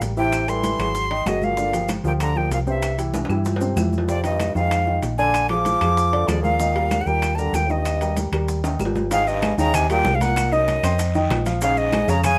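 Under light reverb, this sunny, danceable Afro-Cuban jazz excerpt moves at a brisk 191 BPM in straight 4/4, with a breathy, crisp-attacked jazz flute carrying the melody up front and a punchy trombone with light vibrato adding a second line beneath it. A round, amped hollow-body electric bass and a dark, intimate baby grand piano with audible action noise support them, while ringing metal-shell timbales, thick-skinned congas, low-tuned bongos, woody claves and grainy maracas fill out the percussion. At 9.1 s the key moves from Eb major to Ab major and a raspy, very quiet guiro joins in.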